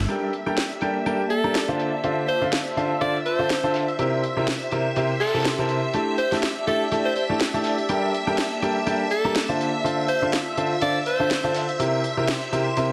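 Energetic and soulful, this piano house excerpt at 123 BPM in D minor, cut from a longer piece, sets a clear, boxy baby grand piano riff with dub echo up front over shimmering string-machine violin chords, a breathy detuned pad in the background, a cracking overdriven electronic snare and a gated 80s kit of hi-hat and snare in a bright stone room, while an edgy, punchy alto saxophone with vibrato carries the melody from 1.3 to 11.6 seconds over Gmadd9, Dm7, C7 and A7sus4 chords, all within a dense, heavily limited modern mix with plate reverb.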